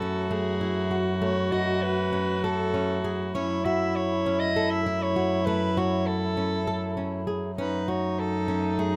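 A restless 7/8 pulse at 198 BPM, counted in eighths, drives this brief piece of contemporary chamber music, cut from a longer work. Its straight feel and uneven meter give it a hypnotic pull. Set in F# dorian over a single F#m7 chord, all five parts sound together across the full 9.0 seconds. The soprano saxophone carries the melody in a classical style with light vibrato and a roomy, distant tone, while the viola traces a second line beneath it with an airy, floating bow played sul tasto. A fingerpicked flamenco guitar spins acoustic arpeggios, the pedal harmonium breathes reedy, dark sustained chords, and a single bowed cello holds the bass on F#2 with a soft attack, sitting up front with a smooth, pure sound. The recording is close and detailed with little reverb, so the warm blend of bowed strings, reeds and guitar comes through plainly.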